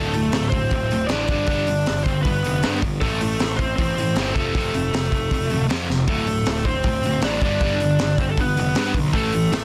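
Punk rock at 157 BPM in a straight 4/4, this short excerpt cut from a longer piece feels urgent and angry from the first beat. A biting, overdriven lead guitar carries the melody up front, picked and bright with a touch of digital delay, while a double-tracked distorted rhythm guitar plays the riff low beneath it. A fuzz-soaked picked bass growls underneath, direct and amped with a bright overdriven edge. The raw garage drum kit comes in at 0.1 seconds with a punchy kick, a high-tuned snare and hi-hat, sounding dark and saturated with a rolled-off top in a small room, and it throws in a fill at 5.9 seconds. The chords cycle through D5, G, Am and F before returning to D5 and G, all held in a dense, heavily limited modern master with little reverb.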